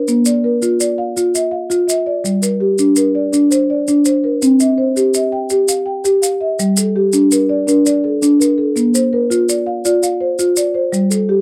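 A rolling 12/8 pulse at 111 beats per minute, counted in dotted quarters, drives this hypnotic, mbira-style interlocking cycle in the southern African traditional vein, cut from a longer piece. A soft-mallet marimba carries the music in arpeggios spanning G3 to G5, its padauk bars sounding woody, round and mellow, set up front in a boxy small room. Maracas add a grainy, mellow, acoustic texture of percussion from 0.1 s until 11.3 s, sitting well below the marimba in level. The harmony moves through Bb, Gm and C, then a second section from 6.6 s returns to Gm and Bb, all in a G equiheptatonic tuning with A pitched at 439 Hz. The sound is dry and close in the manner of a 1970s studio, with a moderate, short booth ambience giving the whole a warm, intimate presence.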